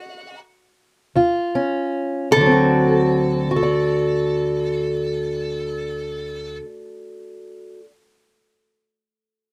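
Swaggering and rollicking, this short cut from a longer acoustic country blues piece in 12/8 opens with a lap resonator guitar alone, its metallic, nasal slide melody played with fingerpicks and sitting up front. At 1.2 seconds a dark, boxy parlour steel-string guitar joins with fingerpicked accompaniment and audible finger squeak, as the opening slows over an Ebsus2 before settling onto D7 at 2.3 seconds. Close, detailed microphones and little reverb keep both guitars intimate and present.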